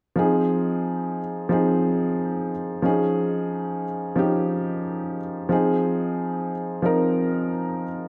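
Tough and hypnotic, this short dancehall cut moves at 90 BPM in a straight 4/4 and sits in F minor. A lone baby grand piano plays accompaniment from 0.2 to 8.1 seconds, cycling through Fm7, Dbadd9 and back to Fm7 in a mellow, worn, vintage tone placed up front. A lush hall reverb with a 2.1-second tail surrounds the piano, giving this fragment of a longer piece a smooth, shadowy depth.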